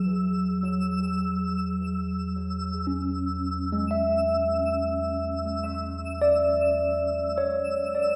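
A wet concert hall reverb with a two-second decay surrounds this brief ambient fragment, cut from a longer piece and lasting about 8.2 seconds. Drifting in free time with a melancholic yet serene mood, it rests on a single E7 chord. Up front, a clean tine electric piano plays arpeggios between F#3 and E5, sounding as if through its built-in speakers and carried by tape echo. Beneath it, a deep, round sine sub bass holds a sustained E2 until 8.1 seconds. High above, a bright, twinkling granular texture sits on E6 with an octave-up FM shimmer, a slow attack and a long release, wrapped in its own built-in reverb.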